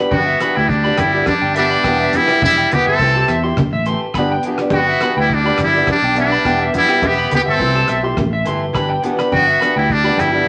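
A buzzy, metal-muted trumpet carries the jazz-inflected melody up front with light vibrato and scooped notes in this carefree, sunny highlife excerpt at 104 BPM in G major, while a brilliant second trumpet sits in the background, a twangy, slightly broken-up electric guitar picks high arpeggios, a boxy, fingerpicked acoustic guitar adds swing-style accompaniment, a growly, punchy fingered bass anchors the low end, ringing low-tuned congas sit close, and a dark, cloth-damped drum kit with a tight kick, hi-hat and rim click stays in the background, all set in a wet studio reverb.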